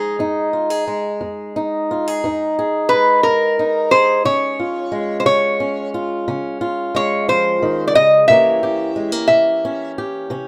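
A lap resonator guitar carries the melody up front, its slide tone metallic and nasal under fingerpicks, and it sings until 9.9 seconds. This is mournful, brooding acoustic country blues in a slow 12/8 with a straight feel, a short passage lifted from a longer piece. Beneath it, a fingerpicked swing-style acoustic guitar supplies the accompaniment with a boxy body, also placed close, ringing on alone to the end at 10.5 seconds. The harmony moves from Fm7 to Db at 4.3 seconds and settles on a tense C7b9 near the close. The duo is captured with close, detailed microphones and little reverb, so every string sound feels immediate and intimate.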